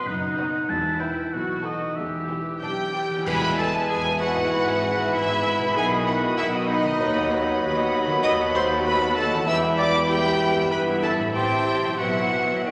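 At a straight 2/4 pulse of 96 BPM, this playful, whimsical film cue opens in E minor with a lush violin section carrying the vibrato-rich melody over a second violin line in the background, a very quiet, intense viola section, focused cellos and double basses on the bass, a ringing, fingerpicked harp in arpeggios and a smooth-topped oboe, while a cymbal swell, dark clash cymbals and concert bass drum add close, dry accents early on. A mellow clarinet joins at 2.6 seconds, and at 3.3 seconds the harmony brightens to E major on a band accent as a crisp, pure silver flute, a dark, roomy bassoon and a vintage-toned French horn section holding sustained chords all enter, before the music slips back into E minor. Bathed in a wet scoring-stage reverb, the cut-down passage feels sneaky and magical throughout.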